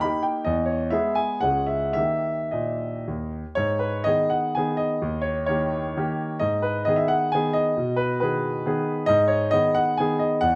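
Proud and graceful, this brief classical piece is a romantic triple-time dance in 3/4 for solo grand piano, set in G# minor and cut from a longer work. The tempo moves freely between 102 and 144 BPM, and the rubato gives the dotted rhythms an elastic, courtly lilt. The grand piano sounds natural and up front, with a warm tone spanning C#2 to B5. Its opening phrase passes through E, C#m and D# before settling on G#m at 3.6 seconds, where the main idea begins again and leans on D#7 before returning home to G#m. A moderate large-studio reverb lends the instrument a sense of space around it.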